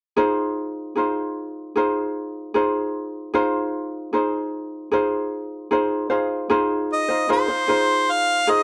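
A light, fingerpicked acoustic ukulele opens this carefree, heartfelt pop excerpt on an Ab6 chord, sitting up front in a dark, warm studio mix with moderate reverb, until a clear, pop-style harmonica enters at 6.9 seconds to carry the solo melody as the ukulele continues to 8.6 seconds.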